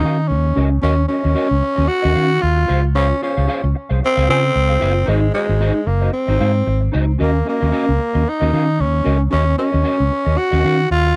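A lightly swung sixteenth-note disco groove at 113 BPM in Eb dorian sets a danceable, sultry mood across this short excerpt, moving from Ebm7 through Dbmaj7 and Ab7 before returning to Ebm7. A raspy, growling tenor saxophone carries the jazz-style melody up front with a tape echo, while a round, amped fingered electric bass sits prominently beneath it. A dark, clean electric guitar adds accompaniment through an ensemble chorus, all captured in a dry, close 1970s-style studio sound.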